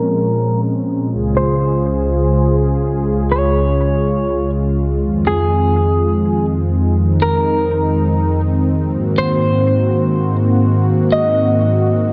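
Spacious and hazy, this atmospheric cloud-rap passage floats in free time. A detuned sawtooth pad, mellow and soft in attack, holds sustained chords through Bbm7, Db, Fm7 and Ab7 with chorus and a low-pass filter, while a clean, fingered, compressed electric guitar carries the melody up front with subtle chorus, a low-pass filter and tape echo. Light reverb, digital ambience and a filter sweep lasting the full 12.1 seconds give the dark, warm production its dreamy depth in this fragment cut from a longer piece.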